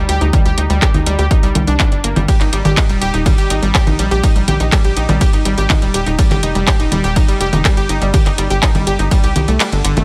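Driving and dark, this melodic techno excerpt sets a bright, detuned analog pluck playing arpeggios, shaped by chorus, digital delay and a filter sweep, against a tight, nasal sequencer bass built from sawtooth and square waves, both pumping from sidechain compression. A punchy electronic kick sits up front from 0.3 s until it drops away at 9.2 s, while a layered techno kit of congas, handclaps, metallic hi-hats and ride cymbal pumps along in a small, dry room.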